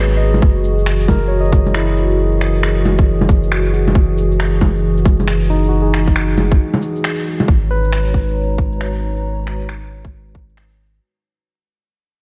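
Future garage in G# minor at 136 BPM with a swung 16th-note feel, this short, rainy and melancholic cut from a longer piece rests on a round sine sub bass and a dark, detuned analog pad with chorus, both pumping against an overdriven, tight electronic kick set up front. A barky, bright tine electric piano carries 12-bit sampler grit and analog delay until 9.3 seconds, while overdriven electronic shaker, cabasa, bongos and finger snaps, re-recorded in a small room, add texture over a bed of vinyl crackle and light digital ambience. After a break at 6.6 seconds, the harmony moves from F#7(no3) to G#m11 at 7.5 seconds as the piece fades out to 11.0 seconds.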